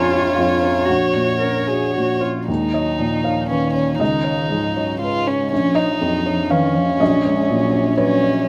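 A moderate large-studio reverb gives this short neoclassical piece for piano and strings the feel of a fragment lifted from a longer work, fragile and reflective in a rubato 3/4. A felt-muted upright piano sits up front with a mellow, intimate tone and audible action noise, carrying the accompaniment. Over it a single violin plays the melody sul tasto with an airy bow and light vibrato, while a lone cello, dark and woody, adds a second line as the music moves from its opening passage into a new section at 2.5 seconds.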